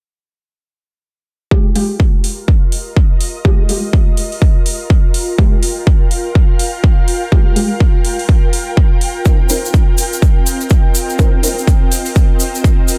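A punchy electronic kick drum sits up front in this bouncy, swaggering bass house clip, driving a swung 4/4 groove from 1.5 seconds and joined at 1.8 seconds by metallic electronic hi-hats, both layered and re-recorded in a small room. Bold, orchestra-hit-like synth stabs built from detuned sawtooth unison with a noise layer cut in with a fast attack and decay, their bright edge shaped by a filter sweep, phaser, tape echo, built-in reverb and sidechain pumping. Behind them an ethereal, airy pad with a slow attack and long release warbles with vintage character, thickened by ensemble chorus and reverb and also pumping with the sidechain. The harmony moves from Fmadd9 to Cm7 at 9.3 seconds, and a grainy, bright egg shaker joins at 9.2 seconds. A digital ambience surrounds the mix in this passage cut from a longer track.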